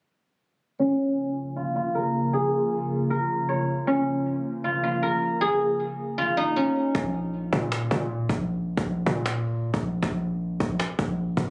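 Captured on a phone in a room with club-style reverb, this eerie, hard-hitting trap excerpt in Bb minor moves at 156 BPM in a half-time feel, tuned to A4 = 436 Hz. A ringing, silvery guzheng played with fingerpicks carries the melody up front through a low-pass filter and tape echo, over a warbling, nostalgic lo-fi pad of detuned sawtooth and triangle tones with chorus, holding a Bb minor chord through a filter sweep. At 6.9 seconds the pad stops and a break begins, as a punchy, heavy 808-style bass with a fast attack and a snappy, close cajon played with soft hands enter.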